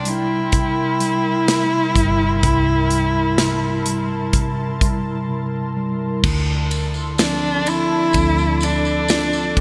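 A heartbroken, longing pop ballad in D minor at a slow 63 BPM, it opens on C7 with a single dark, nasal, woody cello carrying the melody up front with vibrato and portamento over a mellow tine electric piano, an ethereal, airy chorused pad, a round, foam-muted fingered electric bass and an acoustic studio drum kit with a punchy kick and bright cymbals, before a jingly tambourine enters in the background at 6.2 s as the harmony moves to Dm7, all set in a lush hall reverb with a 1980s-style digital production in this short excerpt cut from a longer piece.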